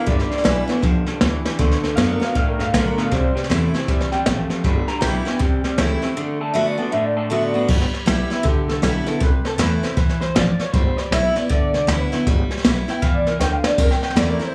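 Brushed jazz drums sit up front in this rollicking, retro rockabilly excerpt at 157 BPM in G mixolydian, swinging over G6, C6 and D6 chords with dark cymbals, a boomy kick and fills at 1.4 and 13.4 seconds. A slightly broken-up, twangy electric guitar carries the melody through analog chorus, plate reverb and tape echo, while a bright, full-bodied dreadnought acoustic picks the accompaniment and a woody, thumpy upright bass on gut strings anchors the low end. A second, lo-fi electric guitar fingers a low riff until 7.7 seconds, when a clean electric guitar solo takes over for the rest of the excerpt.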